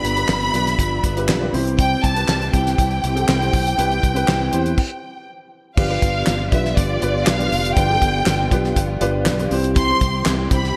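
A lush, up-front violin section carries the melody through this short, anthemic stretch of piano-driven pop, its bowed, vibrato-rich tone sitting high above the band in a straight 4/4. Beneath it, a dark, woody upright piano with long sustain plays the accompaniment, while a fat-snared, tight-kicked 70s drum kit with dark cymbals, handclaps and gated reverb drives things from the front. A punchy fingered electric bass anchors the low end, and a very quiet string section holds sustained chords, with a full-bodied jumbo steel-string acoustic guitar picking a riff deep in the mix. A stop arrives from 4.8 to 5.8 seconds before the second section begins, moving again from G7 back home to C. Light reverb and small-room ambience frame a bright, 1980s-style digital production in this piece cut from a longer work.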